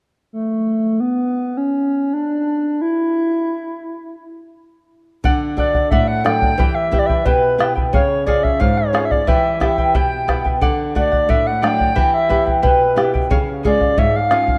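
Andean folk in E dorian at 89 BPM in a straight 2/4, this melancholic, earthy clip opens with a reedy, woody FM lead carrying the melody alone with soft-attack sustained notes, chorus and vibrato, until at 5.2 s the shimmering double strings of a fingerpicked charango, a fingerpicked flamenco guitar and a deep, dark, saturated bombo sitting up front join over a D, Em and C# progression, all bathed in lush hall reverb in a rough home-demo mix.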